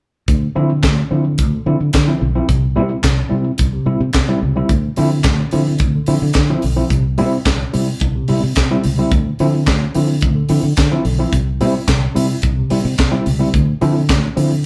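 Disco in D minor at 109 BPM, this sultry, danceable excerpt cut from a longer piece sets a band playing live in one room with moderate studio reverb. A worn, slightly out-of-tune tine electric piano carries the accompaniment up front, lightly overdriven and heard through built-in speakers, moving between Dm9 and C chords. Beneath it, a fingered electric bass gives a dark, round, foam-muted tone, direct and amped, holding the low end. A tight funk drum kit, acoustic and mid-forward, drives the straight 4/4 feel with handclaps, hi-hat, a tight kick and a high-tuned snare. All three parts enter together at 0.3 s and play until about 14.5 to 14.7 s, with the drums stopping first and the bass last.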